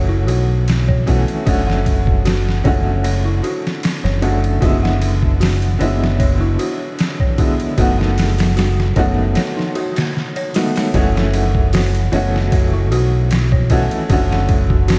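A woody upright piano with tremolo and tape echo, an eerie detuned FM bell arpeggiating through chorus, delay and 12-bit grit, and a round, dark fingered bass open this cinematic, hypnotic trip hop excerpt in F# minor at 76 BPM, before a gritty, pitched-down sampler drum kit with a thumpy kick and overdrive enters at 0.3 seconds, all drifting through a dreamy cathedral reverb and vinyl crackle, with a break at 9.4 seconds and a new section at 10.9 seconds returning to F#m7.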